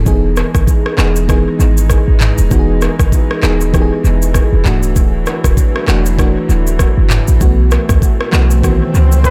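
A warbling, vintage FM electric piano with dub echo opens this romantic, joyful afrobeats excerpt at 98 BPM in E major, over a deep, boomy, sine-toned 808-style bass, with swung sixteenths and chords moving from Emaj7 through Dadd9 to B7sus4. At 0.1 s an electronic afro-pop drum kit with a knocking kick, handclaps, rim click, shaker and toms joins, its dub echo filling the digital ambience, while a soft, floating string section bowed sul tasto sits low in the mix. An electronic swell appears in the background at 8.1 s, and a punchy, close-miked trumpet with light vibrato lands on a single B4 at 9.3 s.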